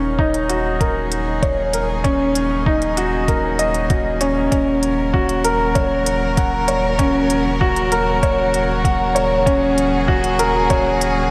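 A muffled, thumpy electronic kick and crisp, tape-tinged hi-hats set a straight 4/4 pulse at 97 BPM, the kick entering at 0.2 seconds and carrying a large-room sheen from its studio reverb. This hypnotic, melancholic piece of piano and strings electronica sits on a single Ebm7 chord in Eb minor, cut from a longer work. A worn, present baby grand piano plays an up-front riff with long sustain, trailed by delay. Beneath it, a string quartet of bowed chamber players, close and focused with vibrato, fades in across the whole passage with sustained chords that pump against the sidechain. A deep, round sine sub bass holds a low Eb with the same pumping motion. A lush hall reverb soaks the mix in a dreamy haze.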